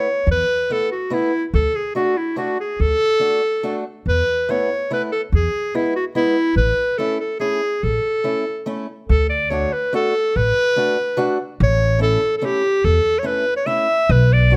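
This bouncy, festive excerpt of alpine folk dance music opens with a bright, classical-style clarinet carrying the melody up front, alongside a fingerpicked acoustic archtop guitar with a boxy, fresh-stringed tone. An upright bass joins at 0.3 seconds, its pizzicato notes woody, dark and growly, sitting low and prominent in the mix. The tune moves at 143 BPM in a straight 3/4 feel, centered on A major with chords such as Esus4, D and E before settling on A. At 9.1 seconds the music shifts into a new section with a move toward D major, touching a D6 chord before returning to A. Close, detailed microphones and light reverb keep the trio intimate and present, with each instrument clearly heard.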